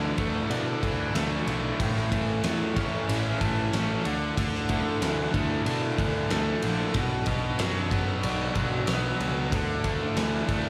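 Classic rock with a confident, swaggering stride, this short excerpt is a live club performance heard through the venue's PA, with a moderate club reverb around the band. Two overdriven electric guitars carry the riff with slapback echo: a bright one sits up front, while a crunchy, warmer one stays in the background. A fuzzed, round and punchy picked bass anchors the low end with dark overdrive. The big acoustic drum kit joins at 0.2 s, up front with a fat snare, a tight kick and ride cymbal. Beneath it all, a very quiet string machine adds lush, mellow sustained chords with vintage ensemble chorus, moving from Dsus2 to A, back to Dsus2, then to Bm before returning to Dsus2.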